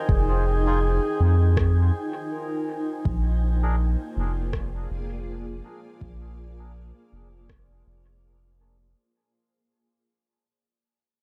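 A dark, warm, dry production carries this meditative, deep ambient dub fragment, cut from a longer piece and fading out across its nine seconds, with a swung feel moving from Fm7 to Bb7. A round, up-front sub bass and a soft, overdriven electronic kick anchor the groove beneath a cloudy, detuned granular pad with its own built-in reverb, while an overdriven rim click sounds through dub echo. A classical-style clarinet with a smooth, dark top states the melody only until 3.0 s, and a reedy, breathy melodica adds filtered stabs with dub echo and a filter sweep from 0.7 s onward.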